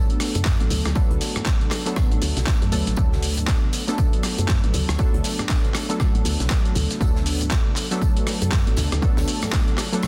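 Swung sixteenths drive this soulful, relaxed deep house excerpt: a gritty, overdriven sampler-style kit of handclaps, hi-hat, rim click and shaker opens the groove alongside a very quiet acoustic studio kit adding snare, hi-hat and tambourine, and a punchy, tape-toned electronic kick soon lands up front. Soft-handed congas sit in the background, while a woody, round FM bass with tube saturation and sidechain pumping enters at 0.4 seconds. Mellow, detuned sawtooth keys play stabs through chorus, delay and their own pumping, all under a dense, heavily limited master.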